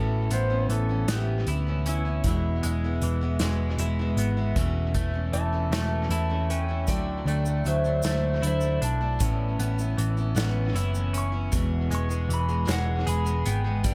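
An excerpt of hopeful, jangly folk rock with a heartland rock lean opens on a pedal steel guitar solo, its clean, fingerpicked slide lines carrying volume swells across the whole 13.9 seconds. Set in A major at a slow 52 BPM in a straight 6/8, the progression moves from Aadd9 to E, then through Aadd9/E and Dadd9 before returning to Aadd9 and E. Underneath, a full-bodied dreadnought acoustic guitar is picked with audible finger squeak and treated with dub echo, while a twangy, compressed clean electric guitar plays a riff with a subtle chorus. A dark, round hollow-body short-scale bass sits punchy and up front, and an unplugged drum kit played with bundle sticks enters at 0.3 seconds with hi-hat, a punchy kick and a medium-tuned snare, also touched by dub echo. A grainy, bright egg shaker joins at 6.9 seconds, and the whole mix is echo-heavy with light reverb.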